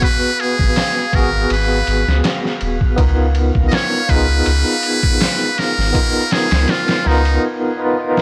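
An 81 BPM trip hop groove in 4/4 with a light 16th-note swing sets a brooding, cinematic mood: a gritty, pitched-down sampler kit thumps out kick, snare and ride, and a deep, round dub sub bass enters at 0.6 s, all on a dry, cassette-tinged recording. Over G#m7 moving to C#13, a barky tine electric piano shimmers with tremolo while a buzzy, metal-muted solo trumpet with light vibrato carries the melody through dub echo, and a reversed, granular texture swells dreamily in the background. At 7.4 s the trumpet, bass and texture drop out, leaving piano and drums for a brief break in this excerpt cut from a longer piece.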